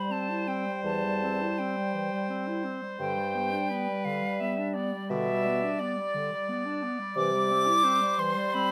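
Serene and warm, this slow romantic classical movement for wind quintet drifts at 86 BPM in a rubato 3/4, with an airy, bright silver concert flute carrying the expressive, vibrato-laced melody up front from D5 to D6 over a clear oboe second line, a distant French horn holding G3, a mellow, roomy clarinet accompaniment and a warm bassoon bass that enters at 0.8 seconds and stops at 7.7 seconds, set in light reverb as the harmony moves from C through G and back to C in this brief passage cut from a longer piece.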